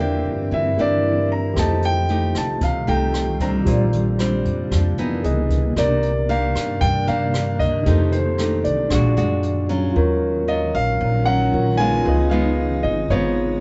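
An intimate, wistful bossa nova fragment, cut from a longer piece, unfolds in a straight 4/4 as a small band plays together in one room with light reverb and a soft, rounded top end. A concert grand piano with an open tone and long sustain carries the melody up front, while a barky tine electric piano heard through a combo amp and a fingerpicked nylon-string guitar fill in the accompaniment. A woody, dark pizzicato upright bass anchors the low end. Behind them, a cloudy, evolving granular pad holds blurred sustained chords with its own built-in reverb. Brushed drums with a boomy kick, hi-hat and rim click play only from 1.6 to 9.8 seconds, and the jazzy extended harmony moves through ninth and altered chords before settling into a minor-key second section at 10.0 seconds.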